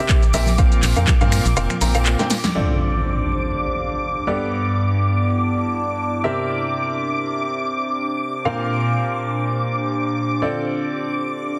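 A dense, heavily limited mix with a moderate plate reverb carries this energetic, bittersweet piano house cut in D minor at 122 BPM, swung on the 16ths, where a bright, woody, slightly detuned upright piano riff sits up front with delay and sidechain pumping over a silky, string-like analog pad with ensemble chorus. A punchy electronic kick, an analog drum machine with filtered snare, claps, finger snaps, hats, shaker and crash, background tambourine and congas played with hard hands, and a hollow, organ-like FM bass drive the opening, which thins into a break at 1.6 s and a drum fill. A nostalgic, lo-fi warbling pad with chorus enters at 2.5 s, and an electronic impact lands at 2.6 s as the chords move through Dm7, Gadd9, C7 and Bbsus2.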